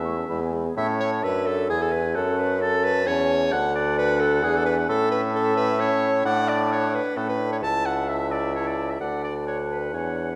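A lively, spirited classical-period movement for wind quintet in A major, taken from a longer piece, moves at a quick 131 BPM in 3/4, with all five players sounding together from the start. A hollow, mellow flute carries the melody with vibrato from the background, while a warm oboe sings a second line, a clear clarinet and a French horn with light vibrato fill in the accompaniment, and an up-front bassoon anchors the bass. Harmonies pass through A, F#m, D and E7, and the ensemble sits in a wet recital hall reverb.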